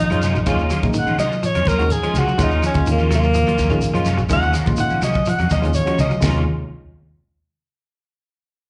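This sounds like a live club gig heard through the venue's PA, with a light club reverb and a dulled top end, cut from a longer afrobeat piece. The mood is defiant and intense, driven by a tight funk drum kit with a high-tuned snare and tight kick, and a dark, round fingered electric bass. An edgy alto saxophone sits up front and solos from the start to about 6.2 seconds, playing forcefully with vibrato, scooped notes and a slapback echo. Behind it, a twangy clean electric guitar picks arpeggios in the background, while a second, brighter clean guitar adds scooped stabs through an ensemble chorus, and a barky tine electric piano fills in the accompaniment through a combo amp with lush chorus, both also carrying slapback echo. Grainy shekere, woody claves and very quiet thick-skinned congas add a layer of hand percussion. The harmony alternates between Gbmaj7/Eb and Ebm9.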